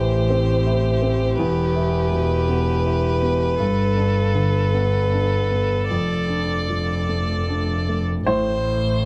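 In a rubato 6/8 sway, this fragile, melancholic neoclassical excerpt sets a focused, bowed solo violin melody with trembling vibrato over a worn baby grand piano's long-sustaining accompaniment, a smooth, even viola that falls away at 8.0 s, and a rich, up-front bowed double bass, all captured dry and close in intimate detail.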